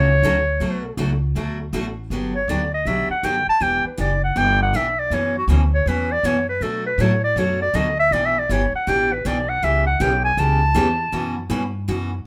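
A swung 4/4 pulse at 160 BPM drives this charming, playful jazz manouche excerpt in B minor, where a breathy clarinet with light vibrato and a soft attack carries the melody up front over bright picked steel-string acoustic guitar and a woody, thumpy pizzicato upright bass on gut strings, set in light reverb as the chords move from Bm7 through Em7 and C#m7b5 to F#7sus4.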